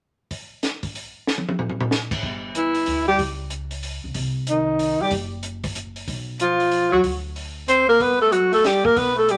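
Warm and swinging, this short cut from a longer small-group jazz piece moves at 187 BPM in 3/4 with a moderate swing on the eighth notes. A compact cocktail drum kit opens alone at 0.3 seconds, its dry sound marked by dark cymbals, a high-tuned snare and a punchy kick, and it plays a fill from 1.3 to 1.9 seconds. An upright bass joins at 2.2 seconds with woody, thumpy pizzicato on gut strings, sitting low and dark beneath the group. From 2.6 seconds two breathy alto saxophones enter, the lead carrying the melody up front with a close-miked, whispered subtone, vibrato and scooped notes, while the second sax plays a line an octave lower at a softer level with the same soft attack. The harmony drifts between open passages and chords such as Cm and Bbadd9/D before landing on G, all inside a moderate club reverb that gives the group an intimate room feel.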